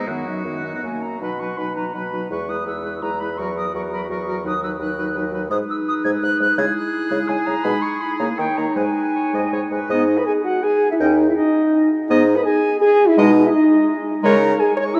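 In a brisk, rubato 3/4 at 166 BPM, this urgent, restless classical-period wind quintet excerpt moves from B major into G# minor at 5.5 seconds, with an airy, crisp-attacked concert flute carrying the melody over a distant oboe's lightly vibrato second line, an up-front, mellow French horn and a roomy clarinet in accompaniment, and a warm bassoon holding the bass, all bathed in the long, echoing wash of a vast cathedral.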